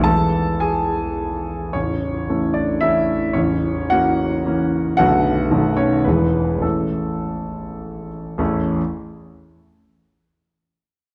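A dark production set in a reverberant recital hall frames this brilliant, sparkling fragment of a classical virtuoso piano study in A major, moving in 3/4 with rubato at roughly 101-114 BPM. A solo grand piano, polished and present with long sustain and placed up front, spans A0 to A5 and plays from the start until 8.8 s, its harmony passing from E and A through F#7/A, Bm7 and B7 before settling back on E and A. A new passage begins at 8.4 s, just before the piano falls silent.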